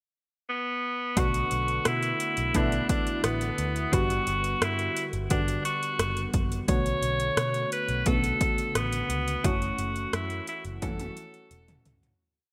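1980s-style pop in B minor at 87 BPM, this short, complete piece feels moody and urgent over a straight 4/4 pulse. A bright alto saxophone opens alone on a pickup bar at 0.5 seconds, then carries a forceful, motif-based solo melody with light vibrato and delay, sitting up front. At 1.2 seconds the verse begins as the rest of the band enters: analog keys with pulse and sawtooth tones, a filter sweep and chorus push chords in drop-2 voicings with grace notes, while a dark, round, foam-muted picked electric bass plays a syncopated pop-funk line. Overdriven electronic pad drums bring a punchy kick, metallic hats, rim click and toms, with a big backbeat placed up front. The chords move from Bm7 to Gmaj7, back to Bm7 and on to F#m7 as the music fades out from 9.4 seconds, with a drum fill closing the piece. A lush hall reverb and bright digital production give it a polished 1980s sheen.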